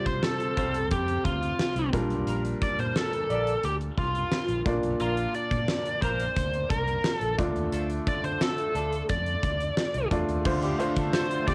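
Urgent and dramatic, this 1980s-style pop excerpt sets a biting, overdriven lead guitar melody with analog delay up front over a clear grand piano with audible action noise, a round fingered electric bass and a huge arena drum kit with fat snare, punchy kick and tambourine, while tight vintage horn stabs enter at 0.6 seconds and a blurred granular cloud pad surfaces very quietly at 11.3 seconds, the guitar, piano and horns carrying a cassette-tape tint and plate reverb within a wet booth ambience.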